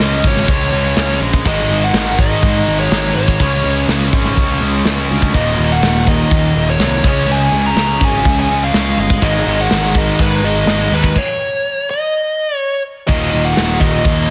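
A straight, driving 4/4 groove from an up-front, tight metal drum kit with bright cymbals and a tight, clipped kick anchors this heavy hard rock excerpt, joined by a fuzzed, overdriven picked bass and a wall of picked rhythm guitars: one bright and overdriven, one tightly distorted and a very quiet, double-tracked sludgy one. A dark, smooth lead guitar carries the melody up front, its overdriven tone trailed by plate reverb and digital delay, while a mellow, round tonewheel organ with slow rotary speaker sneaks in at 5.3 seconds with soft sustained chords. The band hits a full stop at 11.2 seconds before crashing back in at 13.1 seconds, all set in a dense, heavily limited modern mix with a light studio reverb.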